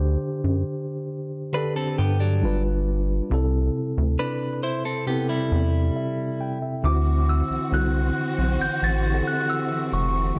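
This R&B excerpt carries a late-night, sensual mood over a straight 4/4 feel, moving through D7sus4, G7, C6 and D9 harmonies. A mellow tine electric piano, heard through its built-in speakers, supplies the accompaniment, while a rubbery, hollow square-wave bass with a resonant filter pluck and moving notch sits dark and up front beneath it. From 1.5 s to 6.6 s, a clean, direct-recorded electric guitar plays compressed, picked arpeggios bathed in spring reverb and analog delay. At 6.8 s a lush bowed string section enters with sustained chords full of vibrato, and at 6.9 s a glassy FM synth bell takes the melody, bright and crystalline with chorus and a long release. The dry, gritty recording carries transformer saturation and cassette tape character in a space with little room reverb.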